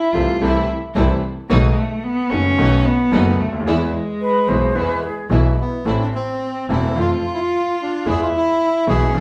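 A rubato 4/4 tango at 110 BPM in A harmonic minor, this dramatic, sultry passage opens with a focused, vibrato-rich bowed cello solo over a clear, vintage concert grand piano with deep bass, a nasal, gut-string bowed double bass, and soft-attack stabs from a lush symphonic string section, before an airy, distant concert flute sounds briefly at 4.2 seconds and a dark, reedy bandoneon takes the melody from 5.6 seconds, the band playing live within a wet large-studio reverb.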